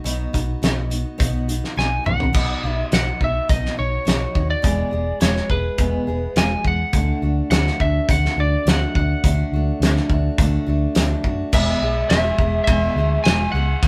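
Folk rock with a heartland rock lean, this excerpt moves at 105 BPM in a straight 4/4 in E mixolydian, carrying a warm, open-road mood as a band plays live together in one room with light reverb. A picked steel-string acoustic guitar with an auditorium body picks out the chords over a dark, round, punchy picked electric bass, while a loose indie drum kit sits up front with a fat snare, punchy kick and dark cymbals, throwing in a fill at 1.8 seconds. That same moment brings in a lightly driven lead guitar, bright, twangy and slightly broken-up, carrying the melody as the harmony travels from B through E and D back to E.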